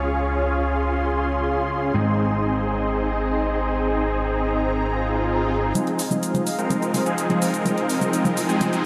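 A mellow felt-muted upright piano, a lush detuned unison pad with chorus and phaser, and huge, bright supersaw chords open this powerful, euphoric festival progressive house excerpt over a fat, wave-folded analog bass; a very quiet swell and riser arrives at 5.0 seconds, the bass stops at 5.7 seconds, and overdriven electronic hi-hat and shaker enter at 5.8 seconds as a filter sweep on the supersaws drives the build-up, the whole dreamy mix soaked in wet ambient reverb with lossy compression artefacts.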